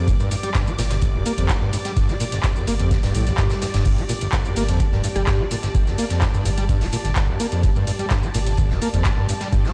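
A straight, steady acid house pulse drives this short, gritty clip cut from a longer piece, anchored by a deep, tape-warm electronic kick and a booming analog drum machine with crash cymbal, handclaps, shaker and metallic hi-hats. Up front, an overdriven acid bass riff squelches with a resonant sawtooth bite, its distortion, tube saturation, ensemble chorus, cassette tape colour and digital delay giving it a grimy edge. Beneath it, a round sine sub bass holds the low end with a sidechain pump, as does a lush, bowed studio string section whose vibrato and smooth top add a rich, focused texture above. A huge arena drum kit sits very quietly in the mix, lending a big-room fat snare and hi-hat, while a background electronic swell sounds between 3.1 and 3.9 seconds. At 5.2 seconds a woody, mallet-like FM pluck flickers once on G4, dusted with chorus, 12-bit sampler grit and digital delay, and the whole track sounds as if played over a big sound system in a bare stone room.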